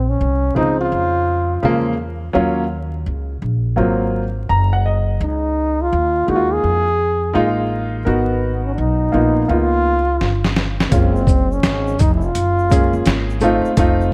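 A nocturnal, cool jazz-hop passage, cut from a longer piece, opens with a solo trombone singing with vibrato and scooped notes over a woody, pizzicato upright bass, joined at 0.5 seconds by a smooth, vintage grand piano that adds a brief fill through chords like Bbm7, Ebm9 and Db69. At 10.2 seconds a gritty, pitched-down boom bap kit arrives with a fill, its thumpy kick and tape-warm snare up front and swung on the 16ths, and at 10.9 seconds a tube shaker and congas settle in the background. Vinyl crackle and a light studio reverb give the dark production its late-night haze.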